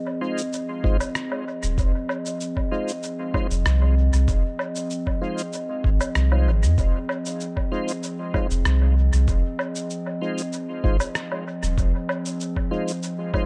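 An echo-heavy digital ambience frames this deep, meditative ambient dub excerpt in F minor at 96 BPM, where a warbling, nostalgic lo-fi pad holds sustained Fm7 chords from the start, smooth tonewheel organ stabs with chorus vibrato, slow rotary speaker and dub echo enter at 0.2 seconds, muffled, pitched-down shaker, woodblock and rim click follow with their own dub echo, and a round, up-front sub bass arrives with a thumpy, compressed kick drum at 0.8 seconds before the bass drops out at 11.9 seconds.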